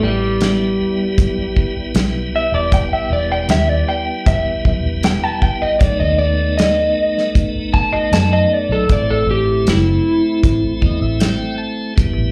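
A straight-eighth soul blues groove in 4/4 moves at a slow 78 BPM, with the drums coming in at 0.4 seconds on hi-hat, a tight kick and a medium-tuned snare that sit dry and up front. This short cut from a longer performance feels mournful and smoky, set in E harmonic minor with the tuning pitched at A4 = 435 Hz and moving from Em to B7 to Am. A twangy, picked electric guitar through a small old amp carries the melody as a clean solo throughout, its bright, slightly broken-up tone sitting up front with slapback echo and plate reverb. Underneath, a tonewheel organ with key click and a lightly overdriven, scooped, piping sound turns through a slow rotary speaker and slapback echo, adding a fill from 10.4 to 12.0 seconds. A vintage foam-muted fingered electric bass gives a dark, round, amped low end. The whole band sounds like a live club gig heard through the venue's PA, with light club reverb.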